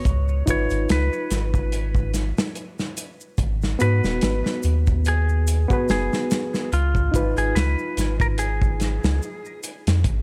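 A lightly swung 16th-note groove in 4/4 drives this smoky, melancholic trip hop excerpt, with a punchy kick, medium-tuned snare and hi-hat from an up-front studio drum kit carrying 12-bit sampler grit and quiet dry maracas in the background, while a deep, round dub sub bass sits forward beneath a barky, overdriven reed electric piano that carries harmonic tremolo, tape echo and a filter sweep over C#7 and G#m7 chords, and a twangy, clean lap steel guitar plays a slide melody through its own tape echo until 9.6 seconds, all in a small room.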